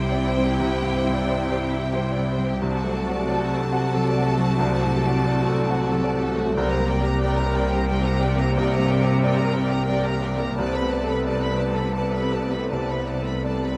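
Set in a moderate scoring-stage reverb, this hopeful, moving cinematic film cue in 3/4 unfolds with a rubato feel over the chords Cadd9, D/C, Gm/C and Bm7/C. A lush violin section with vibrato and soft attack carries the high melody, while a distant second violin section and a focused viola section sit in the background, and a clear concert grand piano with deep bass and long sustain provides accompaniment. A very quiet, ringing, fingerpicked harp plays arpeggios as a rich cello section with a smooth top and an even double bass section anchor the bass on C for the full 13.8 seconds.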